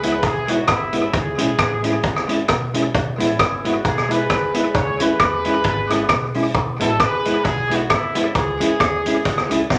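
A swung 133 BPM ska groove in E major drives this joyful, bouncy cut from a longer piece, with an up-front vintage drum kit of punchy kick, high-tuned snare, rim click and hi-hat touched by tape echo, a woody pizzicato upright bass sitting in the background, a dark, clean, fingered hollow-body jazz guitar accompanying over E and C#m, and a distant, roomy horn section carrying the melody with light vibrato, the whole band set in a moderate large studio reverb.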